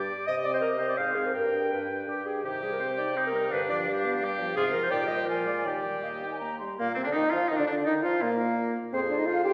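A quick, stormy and restless classical-period movement for wind quintet in triple metre with a rubato feel, cut from a longer piece, in which a pure, straight-toned silver flute carries the melody from the background, a bright oboe with light vibrato sits up front on the second line, a clear French horn and a distant, roomy clarinet fill out the accompaniment, and a mellow, soft-attacked bassoon holds the bass, all five sounding throughout in a wet recital-hall reverb as the music moves into a new section at 6.8 s.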